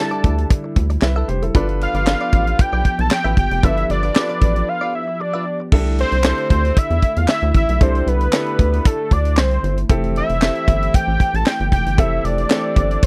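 A fat, mellow analog lead carries the melody over an intimate grand piano, a detuned background pad with chorus and phaser, and a bright, twangy clean guitar riff that stops at 5.6 seconds, while a tight funk kit with handclaps and a high-tuned snare and a rubbery, bouncy square-wave bass drive this feel-good, smooth slice of early-eighties boogie funk, recorded dry and close, with a break at 4.7 seconds.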